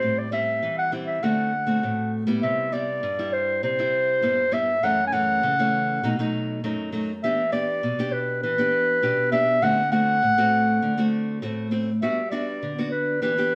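Festive and playful, this short cut from a longer piece blends samba and choro in a straight 4/4 feel. A dark, classical-style clarinet carries the solo melody up front, singing between B4 and Ab5 across the full 13.6 seconds. Beneath it, a small, fingerpicked nylon-string acoustic guitar supplies the accompaniment, also close and present, ranging from F#2 up to G4. After a brief opening phrase, a longer passage begins at 2.4 seconds and moves through seventh chords such as Cmaj7, F#m7, B7 and Em7 before settling on Gmaj7. The duo sounds as though it is playing live together in one studio room, framed by moderate reverb and tuned slightly below standard pitch at A4 = 439 Hz.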